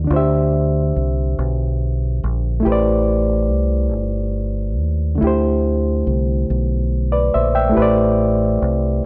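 Slow R&B in six-eight, this short excerpt cut from a longer piece moves at 47 BPM with a sultry, late-night mood and a straight feel, tuned slightly low to A4 = 439 Hz. A barky, reedy electric piano carries the accompaniment up front, its bright, clean tone heard through built-in speakers as it spans D3 to G5. Beneath it, a fingered electric bass sits deep in dub territory between G1 and D#2, dark, round and punchy with a direct, amped sound placed close in the mix. Both parts play together from the start to about 9 seconds, cycling through D9sus4 and Am11, with the chord changing at 2.6 seconds and again at 5.2 seconds. A light reverb lends the whole a digital ambience, keeping the space intimate and unhurried.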